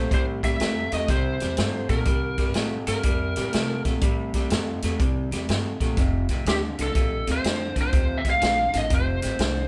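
Electric blues shuffle at 123 BPM in 4/4, swung on the eighths in C mixolydian, with a gritty, rollicking mood in this short cut from a longer piece. A vintage drum kit sits up front with a punchy kick, a medium-tuned snare and hi-hat, its acoustic sound natural and rolled-off on top in a small room. An electric guitar through a small old amp plays the low riff, slightly broken-up and lo-fi, while a pizzicato upright bass with steel strings adds a woody bottom end. Over them, a lead guitar through a small cranked amp carries the melody, dark and overdriven and placed up front. The band plays live together in one room with light reverb, moving from a C7 with its third omitted to an F power chord at 6.0 seconds.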